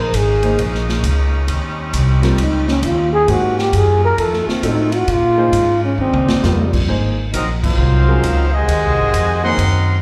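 A breathy, dark solo trombone carries the melody up front for the first 6.8 seconds, its soft-attacked, scooped notes and light vibrato giving the line a whispered, intimate feel. Behind it, a vintage-sounding saxophone section holds sustained chords with a loose, vibrato-laden blend. This brassy, energetic big band swing passage, cut from a longer piece, rides on a woody, thumpy pizzicato upright bass and an airy, polished drum kit with a punchy kick, while a concert grand piano with deep bass and short sustain supplies accompaniment. A drum fill at 6.0 seconds leads into a new section, where a clear trumpet section with vibrato takes over the melody at 7.3 seconds, a warm, tight trombone section plays a second line beneath it, and the band hits an accent soon after. The brass and piano carry plate reverb and slapback echo, the saxophones carry plate reverb, and the whole performance sounds like a live gig heard through the venue's PA, wrapped in moderate club reverb.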